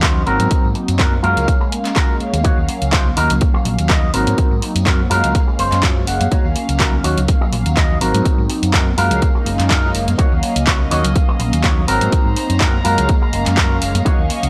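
Nostalgic and sensual, this dry, gritty filtered disco house excerpt at 124 BPM with a light 16th-note swing rides a sweeping filter over a cycling Ab9–Gbmaj7–Ebm7 progression, built on an up-front overdriven electronic kick, a punchy analog drum machine with handclaps and pumping hi-hats, very quiet tambourine and congas, and a round, dark hollow-body bass with tube saturation, while mellow detuned synth brass with chorus and phaser sits under a twangy, scooped envelope-filtered guitar riff with sampler grit, a clean guitar fill arriving at 5.3 seconds, an electronic swell at 9.4 seconds, and a pure, floating violin section entering in the background at 10.2 seconds.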